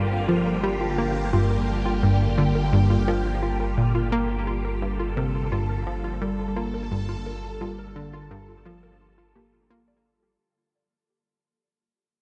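Soaked in a huge ambient reverb and carrying a cassette-tape grain, this excerpt of sequencer-driven space music sits in G minor at 86 BPM on a single Gm7 chord, with a mysterious, expansive mood and a fade-out from 3.0 seconds to the end. Up front, a swirling vintage string machine holds slow-blooming sustained chords through ensemble chorus and phaser, while a punchy, funky analog bass riff with a fast filter pluck sounds through analog delay above a deep, round sine sub bass. In the background, a warbling, dusty, detuned pluck spins mellow lo-fi arpeggios through chorus and analog delay.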